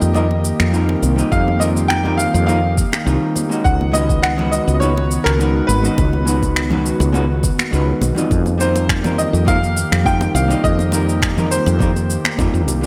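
This smooth sunset chillout excerpt features a bright baby grand piano carrying the melody through a digital delay. Beneath it, a dark, clean hollow-body jazz guitar plays picked accompaniment, also with delay. An airy, breathy pad holds sustained chords with chorus in the background, and a growly, round fretless bass sits up front. Overdriven electronic shaker and finger snaps keep time in a straight 4/4 at 103 BPM, joined by very quiet, ringing high-tuned congas and, from 1.3 s, a soft overdriven electronic kick. The harmony moves in F minor from F9sus4 to Db9sus4 and back to F9sus4 at 8.3 s. A lush hall reverb and bright 1980s-style digital production give the whole a smooth, warm glow.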